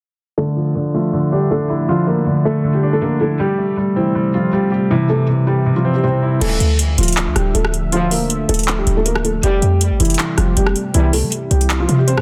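Hip hop in a trap vein, this melancholic, dark cut moves with a half-time feel and comes from a longer piece. It opens at 0.4 seconds with a felt-muted upright piano carrying the melody, soft and intimate with audible action noise and a digital delay, over a dark concert grand piano whose deep bass and natural tone sit up front in the accompaniment, both shaped by a filter sweep. A moody analog pad, built from detuned sawtooth and triangle with a sub octave, drifts in behind them, slow to bloom and lingering long under its chorus. At 6.4 seconds the grand piano drops out as a punchy, tight 808-style bass arrives alongside an overdriven trap drum kit with metallic hats, handclaps, rim clicks and crash, re-recorded in a small room. A clear brass ensemble adds soft-attack stabs with light vibrato in the background until 11.2 seconds, and the whole sits in light studio ambience under a dense, heavily limited modern master.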